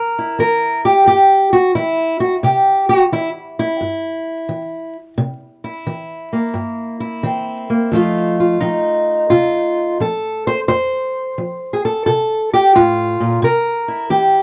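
Acoustic country blues with a gritty, soulful mood, carried by a lone fingerpicked steel-string parlour guitar whose dark, boxy tone sits up front for the whole 14.4 seconds of this fragment from a longer piece. The swung 4/4 groove moves from C7 to F7 at 7.9 seconds and returns to C7 at 13.4 seconds. Close, detailed miking with light reverb and a layer of vinyl crackle gives the recording an intimate, aged character.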